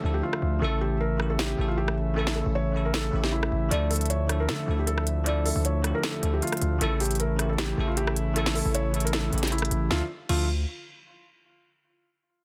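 A dry, dense and heavily limited excerpt of menacing, dark half-time trap at 155 BPM in D harmonic minor, where a distorted, heavy 808-style bass sits up front beside a crisp, sharp-snared electronic trap kit that enters at 0.3 s, while a mellow felt-muted upright piano with audible action noise carries the melody over a bell-like, clean tine electric piano, and a warm French horn section with light vibrato holds sustained chords in the background as the harmony moves between Dmadd9 and A through an opening break that lasts until 3.7 s.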